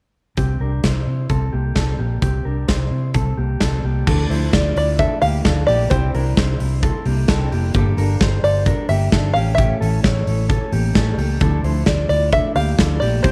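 A straight 4/4 pulse at 131 BPM drives this wistful, restless jangly indie pop excerpt in D minor. A big-room rock kit with a punchy kick and medium-tuned snare sits up front beside a round, foam-muted vintage electric bass with tube saturation, while a clean, compressed electric guitar plays mellow arpeggios through tape echo. A full-bodied jumbo acoustic guitar, fingerpicked with audible finger squeak, joins in the background at 4.1 seconds, and a twangy, plunky open-back banjo carries the melody from 4.8 seconds over chords such as Dmadd9, Cadd9, Gmadd9 and A, all set in a light studio reverb.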